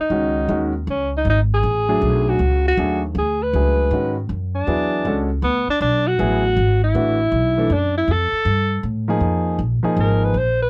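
A swung 3/4 pulse at 158 BPM drives this cool, hypnotic modal jazz excerpt in C# phrygian, where a breathy alto saxophone with subtone and scooped notes carries the melody up front and takes a solo from 9.2 s, a warm concert grand piano with a deep, natural low register comps over harmonies moving from C#sus4 through E9sus4 and F9 to Bb7sus4, and a woody, growly pizzicato upright bass anchors the bottom, all in a dry, close 1970s-style studio sound.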